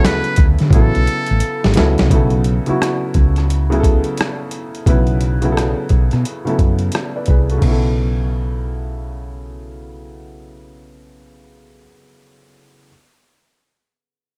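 A loose 16th-note swing in 4/4 carries this soulful, smooth R&B and neo-soul excerpt, set by a gritty, compressed boom bap sampler-style kit with a thumpy kick, snare, rim click, hi-hat and crash cymbal that plays a fill from 0.7 seconds and stops at 7.8 seconds. A buzzy, breathy trumpet with metal mute offers a brief vibrato melody over the opening 1.7 seconds, while a clear concert grand piano, its action noise audible, moves through Dmaj7, Aadd9 and B9sus4 above a round, hollow-body fretless electric bass. The mix is dry and dark, with piano, bass and drums sitting up front.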